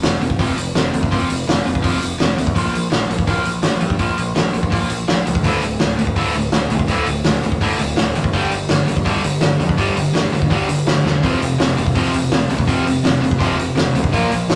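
Raw and angry, this punk rock excerpt charges along at 166 BPM in a straight 4/4, tuned slightly flat to A4 = 439 Hz. An overdriven, scooped electric guitar drives a compressed picked riff from the start, with a growling picked bass beneath it, bright and overdriven. The loose drum kit sits up front with a punchy kick, a medium-tuned snare and hi-hat, its sound gritty and saturated with a rolled-off top. At 5.4 seconds a tight distorted guitar enters with a second bright, picked riff, and a drum fill lands at 11.0 seconds. The harmony moves through F5, Bb5, D5 and G5 power chords before returning to F5, all captured as a rough rehearsal-room recording with tube saturation and light reverb.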